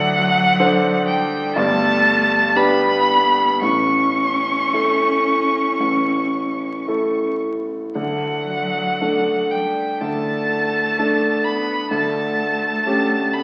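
This short excerpt from a slow romantic movement for piano trio opens with all three players together: a single bowed violin carrying the melody, a bowed cello on a second line, and a concert grand piano in accompaniment, all sounding from the start to 13.4 seconds. The mood is serene and unhurried, moving at around 54-64 BPM in 4/4 with a rubato feel in D major, the harmony passing from D7 through G and A before settling on D and closing on A7/D. The violin sits up front with a smooth, even, vibrato-laden tone, yet it carries a slightly distant quality, while the cello's focused, rich voice stays in the background. The piano is intimate and vintage in character, with deep bass and audible action noise coming through its warm sound. A wet recital hall reverb surrounds the trio, and the whole is heard through the crackle of a very old 78 rpm record.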